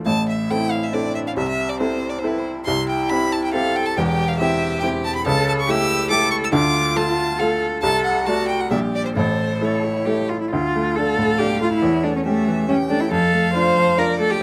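A clear, smooth violin melody with vibrato sits up front in this dramatic, stormy classical-period movement for piano trio, a quick 138 BPM piece in 3/4 played with rubato that moves from A minor to D minor at 5.3 s, with a rich bowed cello carrying the second line and a brilliant baby grand piano with short sustain supplying the accompaniment, all captured by close, detailed microphones in a dry room and cut from a longer piece.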